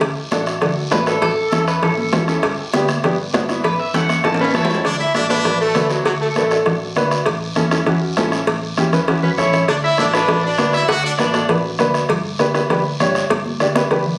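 This festive, joyful cumbia opens on soft-beaten bombo, bright high-tuned congas sitting in the background, ringing close cowbell and timbales and a raspy guiro, over a dark, round hollow-body electric bass, with a clear, woody, boxy upright piano joining almost at once. At 0.9 seconds a twangy, slightly broken-up electric guitar takes the melody through spring reverb and slapback echo, and from 4.4 seconds a brilliant, punchy trumpet with vibrato adds a forceful second line up front, the two parts dropping out and coming back together at 9.2 seconds. Drum fills mark the turns, and the sound has the loose feel of a phone recording made in a room, dressed in moderate studio reverb.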